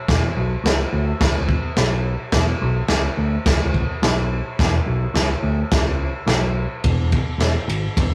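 A straight 4/4 garage rock groove drives this raw, rowdy fragment, with a crunchy breakbeat drum kit up front, its tight kick, medium-tuned snare, dark crash and ride cymbals sounding gritty and saturated with a rolled-off top. A picked electric bass with overdrive plays low and round, punchy and amped, alongside the drums from 0.1 to 8.1 seconds, with the music shifting into a new section at 6.8 seconds. The rough rehearsal-room sound carries a moderate studio reverb.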